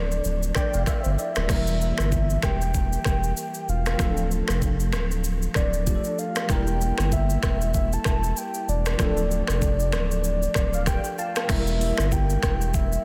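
Afrobeats with a mellow, sultry mood, this clip is cut from a longer piece and moves with a swung sixteenth-note feel in 4/4. A soft, octave-layered synth lead carries the melody, its round, dark tone touched by chorus, vibrato and tape echo. Beneath it, a bell-like tine electric piano supplies clean, bright accompaniment treated with ensemble chorus, adding fills from 0.2 to 1.5 seconds and again from 10.2 seconds. A saturated sub bass sits thick and up front, while an electronic afro-pop kit enters at 0.1 seconds with a knocking kick, metallic hi-hats, finger snaps, rim clicks, shaker and crash cymbal, the drums carrying the character of a large room. The harmony alternates between Dm and Edim, and a light digital ambience gives the mix a gentle sense of space.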